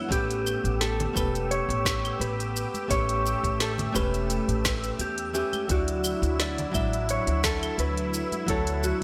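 A blissful sunset chillout excerpt at 86 BPM opens with a dark, clean electric guitar melody carrying tremolo and digital delay over fingerpicked classical nylon-string guitar, a thick, detuned sawtooth pad warbling with chorus, and a breathy, wind-like noise layer drifting in the background. From 0.1 seconds a woody pizzicato upright bass sits up front alongside a deep electronic kick and a gated-reverb deep house kit of claves, smooth hats, shaker and woody snare, with close, dry congas joining at 1.0 seconds, all in a lightly swung 16th-note feel. The harmony moves from A9 to Dmaj9 at 5.7 seconds, framed by a moderate plate reverb and bright 1980s-style digital production.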